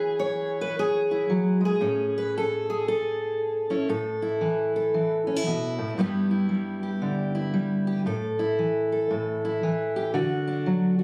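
Pastoral and warm, this short folk passage from a longer piece features a solo fingerpicked steel-string acoustic guitar at 115 BPM in A major, with a lilting swing on the eighth notes. The fresh strings ring warm and up front, with audible finger squeak, while the harmony drifts from E6 to Amaj7 before shifting at 3.9 seconds through A5 and G6 toward D. A phone recording made in the room gives it an intimate, natural feel, touched with light reverb and compression.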